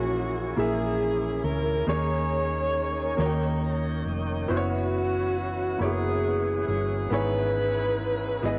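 Gospel in a slow 6/8 at 46 BPM, fervent and solemn, where a breathy, pop-style alto saxophone sings the melody over a close-miked jazz saxophone section in the background, an intimate baby grand piano with audible action noise, a smooth tonewheel organ through a slow rotary speaker that adds a fill from 3.2 to 4.5 seconds, and a round, dark hollow-body electric bass up front, all in a light-reverb home cassette recording cut from a longer piece, moving from A#m7b5 through D#7 to E6/G#.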